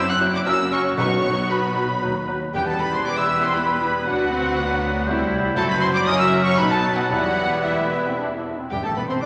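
A quick classical-period movement for symphony orchestra in E minor and 3/4 at 117 BPM, dramatic and restless, with a rubato feel and cut from a longer piece. A close, expressive violin section carries the melody with vibrato, joined by a pure, soft-attack concert flute in the same high range, while a clear oboe, a distant, very quiet clarinet, a very quiet second violin section and a mellow bassoon add inner lines over rich, smooth viola and cello sections and a warm, smooth double bass section. A very quiet, tight French horn section enters with sustained chords at 0.5 seconds, and timpani struck with hard mallets punctuate from 1.0 to 3.3 seconds and again at 8.7 seconds, all wrapped in a wet concert hall reverb.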